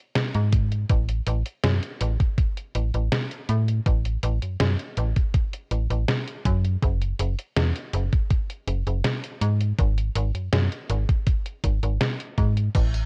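Vaporwave with a dreamy, faded mood, this short cut from a longer piece sits close and dry on cassette tape, pairing a thumpy, sampler-style electronic kick with a detuned 8-bit drum machine of crash, hi-hat, medium-tuned snare and tambourine (both up front, re-recorded in a small room and carrying vintage 12-bit grit) alongside a prominent slap-like FM bass whose snappy, metallic, quickly decaying tone spans F#1 to A2.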